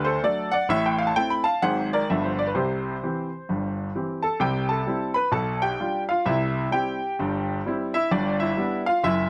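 A swinging 4/4 at 130 BPM drives this exuberant, playful stride piano excerpt in C major, cut from a longer piece and lasting about 9.3 seconds. A lone grand piano, clear yet worn with short sustain and placed up front, ranges from F#1 to B5 through changes such as Ab7 to G9 before settling on C and closing on G. The dry, gritty recording carries little reverb, keeping the sound close and immediate.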